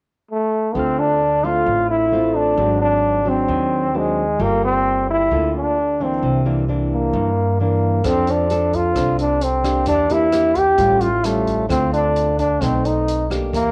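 Bossa nova in D minor at 132 BPM, smooth and melancholic, cut from a longer piece and recorded at home on cassette with light studio reverb. A clear, distant trombone with vibrato carries the jazz-style solo melody up front from 0.3 seconds, over thumb-plucked classical nylon-string guitar with cassette grain, a woody, thumpy gut-string upright bass played pizzicato, and a very quiet, clean tine electric piano heard through built-in speakers, moving through chords such as Dm7, G#7#11, Gm9 and C9. At 8.0 seconds an open jazz drum kit joins with hi-hat, rim click and a boomy kick, sounding natural in a small room.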